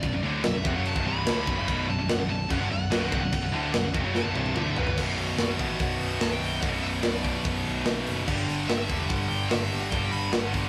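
Hard rock with a driving, heavy feel, this clip features a dark, smooth overdriven lead guitar solo over three bright, distorted rhythm guitars grinding out a low riff in the background, two of them high-gain and one double-tracked. A growly, punchy picked bass and an up-front metal drum kit with a tight kick and rolled-off top push things along, with a drum fill from 4.2 to 5.0 seconds leading out of the solo as the harmony moves from B minor to power chords. The whole band sits in a rough rehearsal-room sound with a moderate stone-room reverb.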